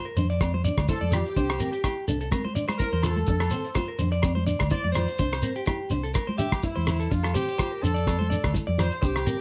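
A punchy, present horn section with light vibrato carries the melody of this carefree highlife guitar band clip, entering at 0.9 s with a plate-reverb sheen and holding the solo spotlight through the end. Underneath, a bright, twangy clean electric guitar spins arpeggios through slapback echo, while a dark, full-bodied nylon-string guitar adds thumb-plucked accompaniment, and a round, hollow-body fingered electric bass anchors the low end over gently swung sixteenths. A muffled, gritty, cloth-damped drum kit sits up front with a tight kick, hi-hat and rim click, joined by a close, dry, grainy shekere, with soft-handed, high-tuned congas and ringing agogo bells further back, all in a moderate studio room.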